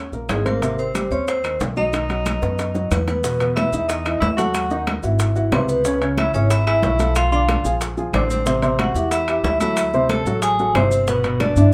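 Ringing vibraphone with medium hard mallets and a medium motor vibrato carries the melody in this sunny, sophisticated Afro-Cuban jazz excerpt, joined by a distant, roomy tenor saxophone second line over an intimate baby grand piano with audible action noise, woody pizzicato upright bass up front, and a percussion bed of high-tuned congas, tight bongos, metal-shell timbales, dry claves and grainy maracas, with a drum fill from 2.4 to 3.2 seconds leading into the next section, all set in a moderate club reverb.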